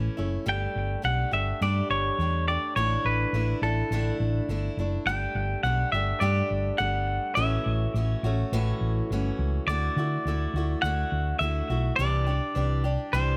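Lightly reverberant and steeped in an open-road, nostalgic mood, this folk rock and heartland rock excerpt moves at a straight 104 BPM in 4/4. A boxy parlour steel-string acoustic guitar picks the accompaniment, and a dark, round hollow-body short-scale bass sits up front. From 0.5 s a bright, twangy, compressed clean electric guitar carries the melody with plate reverb and analog delay. The harmony passes through Gsus2, Dsus2/A and A6 before settling into D mixolydian at 9.7 s over Dadd9 and Cadd9.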